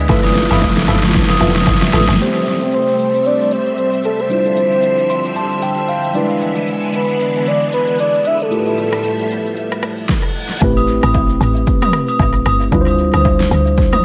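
A swung, hypnotic amapiano groove rides on a punchy, overdriven deep house drum kit up front, with woody, percussive log drum bass, band-limited agogo bells and woodblock, and a soft chord stab in the background opening this deep excerpt. The stab, percussion and log drum bass drop out around 2 s, leaving the drum kit, the mellow tine electric piano with its tape echo and a short fill, and a swirling, warbling string machine with phaser and sidechain pumping. From 2.7 s, a round, dark octave-layered synth lead carries the melody above them with tremolo and vibrato. A reverse cymbal at 10.0 s leads into the return of the log drum at 10.6 s and the percussion at 10.8 s, all set in a light reverb and an echo-heavy digital ambience.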